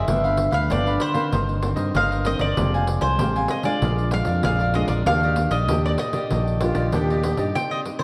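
Samba and choro in Eb major at 96 BPM, this short, nostalgic and yearning excerpt from a longer piece sets a woody, double-string mandolin melody with slapback echo up front over crisp picked cavaquinho, dark fingerpicked nylon-string guitar and a bright, amped fingered electric bass, while a jingly, close pandeiro played with hard hands keeps time. The harmony moves through G7, Cm7/G, Fmadd9 and Bb7 to settle on Ebmaj7, and near the end a breathy concert flute with vibrato adds a brief second line from 6.6 to 7.6 seconds. The dark production sits in a reverberant recital hall.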